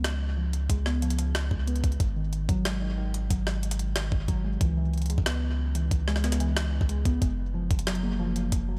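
A deep, round analog bass with tube saturation and a filter sweep opens this playful, intricate IDM excerpt alongside a compressed jungle sampler-style kit of hi-hat and rim click treated with tape echo. A mellow, ringing harp-like synth pluck enters at 0.4 s, spinning arpeggios through chorus and delay, and a gritty, thumpy, pitched-up electronic kick arrives up front from 0.7 s, all in a lightly reverberant room.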